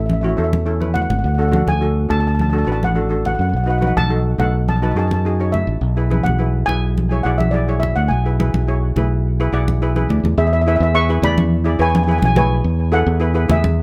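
A small room's moderate reverb frames this bouncy, festive calypso excerpt, where a mellow, dark lead steel pan played with soft rubber sticks sits up front with a touch of delay over boxy double seconds struck with hard rubber sticks, both pans shimmering and metallic, while a direct, amped fingered electric bass stays forward and warm, and close congas under hard hands add drum fills at 0.8 and 10.0 seconds, the latter overlapping a steel pan fill starting at 9.2 seconds.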